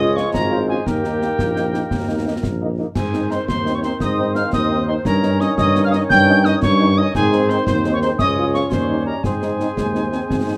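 A festive, rousing military-style march for wind band in 6/8 at 114 BPM in Ab major, cut from a longer piece, where a dark, smooth-topped trumpet section carries the melody over a present, up-front tuba bass, a crisp, pure piccolo with vibrato soaring above, a woodwind section with light vibrato, distant French horns and tight, vintage trombone chords sitting in the background, concert snare, bass drum and dark-toned clash cymbals entering at 0.2 seconds, and a punchy euphonium appearing briefly at 9.8 seconds, all in a light reverb.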